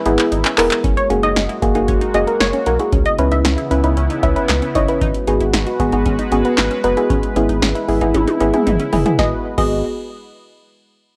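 Cool and driving, this synth-pop passage from a longer piece moves at 115 BPM in G# minor over E/G#, F#add9, C#m7 and G#m7. A punchy, up-front analog drum machine with a deep kick and metallic hats opens on a fill. It supports a round, dark bass with tube saturation, a soft wave-folded pluck playing chorused accompaniment, and a bright, evolving pad holding sustained chords. Lush detuned unison plucks add background arpeggios through analog delay and a higher second line from 1.0 to 4.9 seconds that returns at 9.2 seconds, all with a dry, gritty cassette-tape sound.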